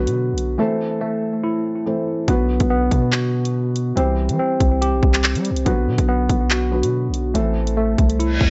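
Drill hip hop at 142 BPM in a half-time feel and B phrygian, tense and menacing, where a worn, slightly out-of-tune tine electric piano plays filtered, tape-echoed arpeggios up front over a dark, boxy felt-muted upright piano with audible action noise, a deep sine 808 bass with long decaying notes, and an electronic drum kit with a hard-clipped kick, bright hi-hats and handclaps that drops out from 0.6 to 2.3 seconds before a reverse cymbal closes this excerpt at 8.3 seconds.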